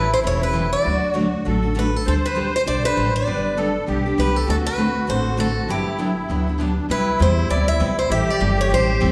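A brisk 198 BPM swing in 4/4 drives this charming excerpt of acoustic string jazz manouche in G major. A bright, boxy picked guitar carries the melody up front while a reedy, shimmering musette accordion adds a second line. Two picked steel-string guitars play the accompaniment, one full-bodied and the other softer in the background, both with audible finger squeak, over a woody, thumpy gut-string upright bass, all ringing in a wet recital hall with a 1.4 s reverb.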